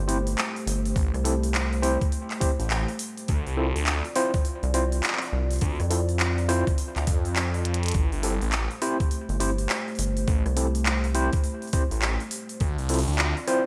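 A dark analog pad and a rubbery, hollow square-wave bass open this gritty, playful glitch hop excerpt at 103 BPM in A minor, with a swung 16th-note feel and chords moving between Am7 and Dm7. The pad sits in the background with chorus, a coarse 12-bit sampler grit and sidechain pumping, while the nasal, bouncy bass rides up front with tube saturation until 11.3 seconds. An overdriven, barky tine electric piano plays stabs through a combo amp, coloured by fast tremolo, delay and its own pumping. A clicky glitchy kit of handclaps, hi-hat and rim click sits up front with studio and gated reverb, joined at 1.0 seconds by a thumpy, pitched-down electronic kick and a swirling, thick detuned saw bass run through a phaser. A drum fill lands at 7.7 seconds, and the whole has the bright sheen of 1980s-style digital production with light reverb.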